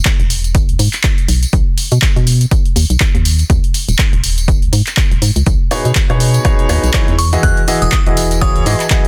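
A tambourine, faint in the background, opens this joyful, uplifting piano house cut in B major at 122 BPM with a 16th-note swing, joined at once by a punchy, overdriven electronic kick up front, overdriven analog drum-machine handclaps and hi-hat, and a hollow, organ-like FM bass pumping against the kick, before a clear, woody upright piano riff enters at 5.7 seconds on a B69 chord and a glassy, crystalline synth bell melody with chorus, phaser and digital delay arrives at 7.2 seconds over Emaj9, all within a dense, heavily limited modern master.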